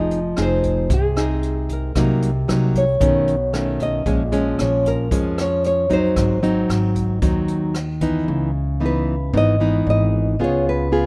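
A dark, up-front classical nylon-string guitar carries the melody in this smooth, intimate bossa nova excerpt, its fresh strings catching the occasional finger squeak as it moves between Ab4 and Eb5. Beneath it, a second fingerpicked nylon-string guitar with a small, warm tone supplies the accompaniment, while a woody pizzicato upright bass strung with steel holds down the low end at a straight 114 BPM in 4/4. A brushed jazz kit with a natural small-room sound, boomy kick, hi-hat and rim click joins at 0.1 seconds before dropping out at 8.1 seconds. The harmony drifts from Fm7 through Cm7b5, B9, Bbm7 and Ab7, then shifts at 8.3 seconds into a new section on C#m9 and C#7. Light studio reverb gives the rough home-demo mix a gentle sense of space as this fragment of a longer piece closes.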